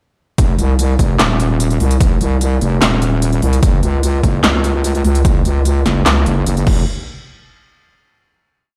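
Heavy wobble dubstep at 148 BPM in a half-time 4/4 feel, this short, menacing and chaotic piece opens straight into a drop at 0.4 seconds, led by a heavy, resonant wobble bass with chorus and overdrive whose modulated phrases shift their wobble speed between Eb1 and Db2. Alongside it, a punchy, overdriven electronic kick and a big-room dance kit of crisp hi-hats, snare, handclaps and crash drive the half-time beat, re-recorded in a large, bare room. The drop gives way to a final hit at 6.9 seconds.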